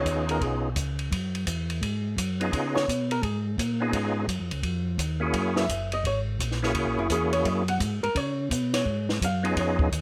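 Opening straight in on a fat, lightly overdriven tonewheel organ melody with percussive key click, chorus vibrato and a slow rotary speaker bathed in plate reverb, over a smooth, clean organ bass line, this greasy, soulful soul jazz organ trio swings at 171 BPM in Db mixolydian through chords moving from Db9 to Gb9 and back, as a tight cocktail kit with a punchy kick, high-tuned snare and dark cymbals enters at 0.1 seconds and a dark, picked hollow-body archtop guitar solos in short bursts before settling in from 5.6 seconds, captured by close, detailed microphones in a lightly reverberant room.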